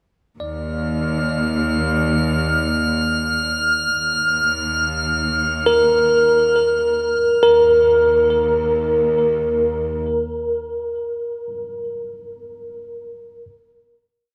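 Bathed in a huge, wet reverb, this serene ambient piece drifts in free time, tuned to A4 = 444 Hz. A bell-like tine electric piano fades in with scattered, delayed arpeggios from 0.4 to 7.4 seconds over an Ebsus2 chord, while a close, intense cello section holds a bowed Eb2 root with light vibrato as it fades out. A glassy, slow-blooming texture of chorused harmonics sustains a high F6 above them before the music settles onto a final Eb5 chord at 7.4 seconds.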